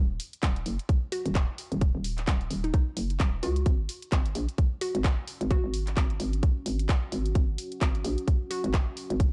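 A swung 130 BPM groove in 4/4 drives this bouncy, swaggering bass house clip in Eb minor: a tight, up-front electronic kick and a tape-warm garage kit of handclaps and hi-hat sit under a punchy, knocking FM bass with overdrive and sidechain pumping, opening on an Eb minor chord before the harmony drops away at 3.7 seconds. From 1.1 seconds a hollow, detuned square-wave pluck with chorus, cassette tape color and delay bounces through a narrow upper range. At 5.9 seconds a deep, moody ambient pad with slow attack and built-in reverb settles in the background of the dark, dry production.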